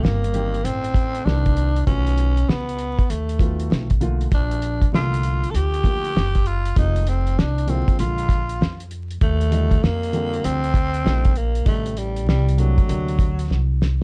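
A 98 BPM groove in 4/4, swung on the 16ths, carries this cool, nocturnal jazz-hop fragment, with a cloth-damped, thuddy drum kit up front (fat snare, tight kick and hi-hat with a rolled-off top) alongside a woody pizzicato upright bass. A breathy, raspy tenor saxophone takes the solo melody with growls, vibrato and scooped notes, while a dark, mellow upright piano with a vintage tone comps through changes moving from Cm7 to D7b13. The dry, warm production carries vinyl crackle, and a drum fill at 13.5 seconds closes the passage.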